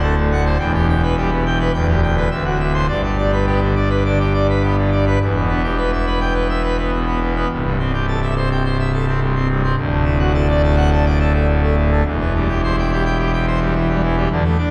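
Jubilant and majestic, this classical organ toccata moves at 105 BPM in a straight 4/4, with a solo pipe organ on full organ, mixtures drawn, sounding brilliant and up front in a romantic voicing that spans C1 to G5. The harmony shifts quickly through D7, Em, G/D and D9 to G in the opening 5.2 seconds, then settles into broader chords of Em, Am7/C, D and C/E. A cathedral reverb with a 4.0-second decay fills the church or concert-hall acoustic around this short section cut from a longer piece.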